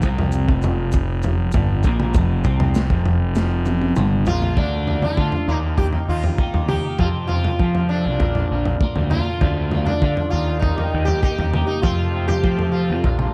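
An up-front, punchy fuzz bass drives this hazy, kaleidoscopic psychedelic rock cut at 99 BPM in F mixolydian, alongside a gritty, saturated breakbeat kit with a tight kick and a dark, rolled-off top, plus a clean, compressed twelve-string electric guitar riff treated with phaser, double-tracking and analog delay. Grainy maracas sit in the background at the start, while a very quiet vintage string machine of violas adds slow-attack sawtooth chords with ensemble chorus and phaser. After a drum fill at 3.4 seconds, a buzzing, shimmering sitar melody with analog delay enters at 4.3 seconds over chords moving through Dm, Eb, F and Bb, and the string machine returns at 9.8 seconds in a dry, echo-heavy mix.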